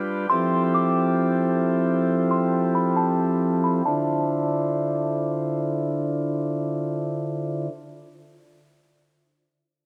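A dark, spacious production bathed in lush hall reverb frames this short cut from a longer atmospheric cloud-rap hip hop piece, melancholic in mood with a half-time feel. Up front, a full, brilliant pipe organ plenum with baroque voicing holds sustained chords through a low-pass filter from the start until 7.7 seconds, moving from Fmaj7 to Dm7 at 3.9 seconds as a filter sweep runs across the opening. Tucked in the background, a delicate, tinkling FM tine bell with chorus, phaser and delay plays a high melody until 5.1 seconds.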